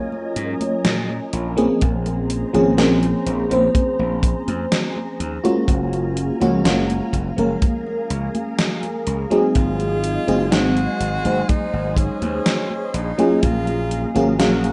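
Faded and woozy, this vaporwave fragment, cut from a longer piece, drifts at a slow, straight pace over a lush, dreamy FM electric piano with a soft pad layer, placed up front and bathed in phaser, chorus and tape echo. Beneath it a silky, dark string machine holds sustained chords with slow attacks and long releases, its phaser and ensemble chorus adding a vintage sheen far back in the mix. A gated 80s digital drum machine with congas, hi-hat and an overdriven, gated-reverb snare sits alongside a tight, rolled-off acoustic kick that pumps in its small booth, while a gritty, punchy slap bass with overdrive anchors the low end. At 9.6 seconds, as the harmony shifts from Gbmaj9 to Ab7, a close-miked tenor saxophone enters with a jazz-style solo, its scooped notes and vibrato softened by tape echo. The whole thing has the rough, dulled quality of a home demo, with its top end shaved off and a studio reverb around it.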